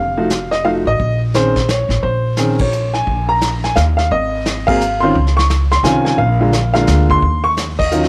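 A clear upright piano carries the melody in this short cut from a longer jazz piano trio piece, its intimate, boxy tone sitting up front with audible action noise and long sustain. The mood is cool and late-night, moving at 173 BPM in a swung 3/4 in Bb minor. A pizzicato upright bass with gut strings gives a woody, thumpy low end, also close and present. A vintage brush drum kit comes in at 0.3 seconds, its small-room sound warm and rolled-off at the top, with a medium-tuned snare and punchy kick under brushed snare, hi-hat, ride and crash. The harmony moves from F7b9 to Bbm11, then through Bb7sus4, Ab, Dbmaj9 and Bb7, and the band hits shared accents at 2.6, 4.6 and 7.7 seconds. Light reverb and studio ambience lend the trio a warm, close feel.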